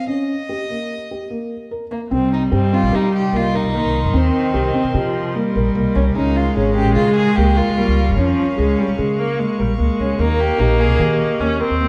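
Counted in an uneven five-beat meter with a straight feel, this restless, playful piece of contemporary chamber music is cut from a longer work. A felt-muted upright piano opens almost at once with mellow, intimate arpeggios, while a single bowed violin carries the melody in a reedy, gut-string period style. At 2.1 seconds the rest of the ensemble arrives: a rich, smooth viola sings a second line with light vibrato, a chamber string section holds dark, nasal sustained chords with a smooth top, and a pizzicato upright bass adds a woody, thumpy pulse up front. The harmony moves from Eb7 through Cm7 and Db6 before returning to Eb7, and the violin drops out at 11.0 seconds as the others carry on to the end. A recital hall reverb wraps the dark, warm production in a wet, lingering space.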